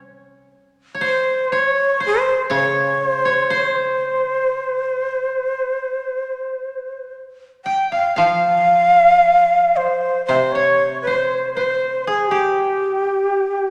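Two fingerpicked kotos open this calm, austere piece of Japanese chamber music, taken from a longer work in C miyako bushi and tuned slightly below standard pitch, to A4 = 438 Hz. The upper koto plays a bright, woody second line up front, while the lower one gives a warm, dry accompaniment in the low register. At 1.1 s a breathy bamboo shakuhachi enters with the melody, also sitting up front with a tongued, vibrato-laden tone in the same range as the upper koto. The pulse is nominally 59 BPM in 4/4, but the beats are uneven and the phrasing unfolds freely in rubato. The music moves into a new section at 8.2 s and carries on until the recording ends at 13.7 s, all framed by the long, wet reverb of a concert hall.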